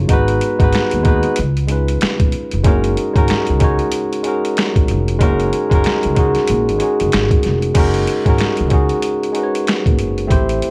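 R&B with a neo-soul lean, this soulful excerpt moves at 94 BPM in F# major with a 60% sixteenth-note swing, cycling through G#m7, C#9 and F#69. A bright, barky tine electric piano heard through a combo amp sits up front, over a woody pizzicato upright bass with a thumpy, acoustic tone. A gritty, pitched-down boom bap sampler-style kit, compressed and also forward, adds a thumpy kick, a medium-tuned snare, hi-hat, finger snaps and crash cymbal, all within a dark, warm production with light reverb.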